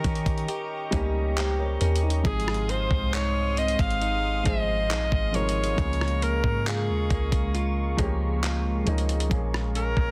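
Contemporary R&B at a slow 68 BPM with a longing, late-night mood, this excerpt sets an edgy, forceful alto saxophone melody with scooped notes and tape echo over a dark baby grand piano with audible action noise, a smooth, warbling analog pad with chorus, twangy clean electric guitar arpeggios bathed in lush chorus and tape echo, a round, deep 808-style bass, and a gritty sampler-style drum kit of thumpy kick, handclaps, hi-hat and rim click, all in a dry, dense, heavily limited mix moving through Eb7, Ab6, Db6 and Bbm7.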